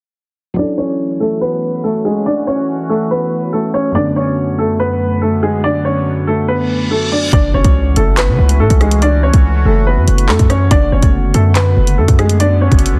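Dark and ominous, this excerpt of half-time drill hip hop at 142 BPM in F# minor opens with a soft, felt-muted upright piano with audible action noise in the background, joined a moment later by a woody, natural upright piano melody carrying tape echo and a nasal, detuned sawtooth pad with chorus, all moving between F#m7 and Bm7/F# under a filter sweep. A reverse cymbal arrives at 6.6 seconds, and at 7.3 seconds an impact lands as the muted piano gives way and a punchy, heavy 808-style bass and an electronic drill kit enter up front, the kit bringing a hard-clipped kick, handclaps, hi-hats and rim clicks into a dense, heavily limited mix with digital ambience.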